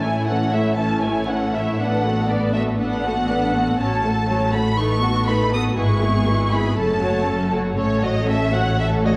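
Spirited and graceful, this quick classical-period movement for string orchestra moves at 120 BPM in a straight 4/4, and it is cut from a longer piece. A studio violin section carries the melody up front with a soft attack, expressive vibrato and a rich tone, while a more distant symphonic violin section plays a smooth, even second line beneath it. A clear, lush viola section supplies the accompaniment, and the bass is shared by a focused cello section with a smooth top, sitting in the background, and a double bass section bowing an even foundation. The harmony starts on A and passes through Bm7/A, F#m/A, B7/A and E/G#, settling on F#m and then F#m/A by 7.8 seconds. The ensemble is heard from further back in a recital hall with a reverb tail of 1.3 seconds, and vinyl crackle gives the sound an aged patina.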